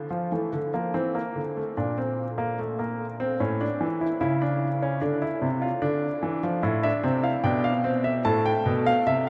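A clear grand piano sits up front in a vast, echoing space, its intimate tone and audible action noise set against a huge, wet reverb that lingers for nearly nine seconds. This solemn, contemplative excerpt from a baroque-style three-part fugue in D minor moves at 74 BPM in a straight 4/4, the solo piano ranging from A2 to A5. Over about 9.3 seconds the harmony passes from D minor through B-flat sus2 and A major, back to D minor, and settles on A minor.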